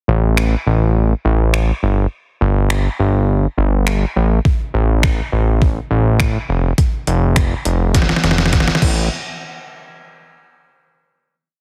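The mix is dry and heavily compressed, with a loud, radio-ready sound that puts both parts up front. This is a short, complete dance-pop piece at 103 BPM in a straight 4/4, with a bittersweet yet confident mood. A fat analog sawtooth bass enters at 0.1 seconds and plays an off-beat line low in the register, from F1 to A1; its detuned, thick tone evolves under a filter sweep, with a fast attack, sustained notes and sidechain pumping. A detuned 8-bit digital drum machine, overdriven and re-recorded in a large room, drives a four-on-the-floor beat with a thumpy kick, a medium-tuned snare, hi-hat, finger snaps and crash cymbal. A drum fill arrives at 7.9 seconds, leading into a final hit at 9.1 seconds that closes the piece.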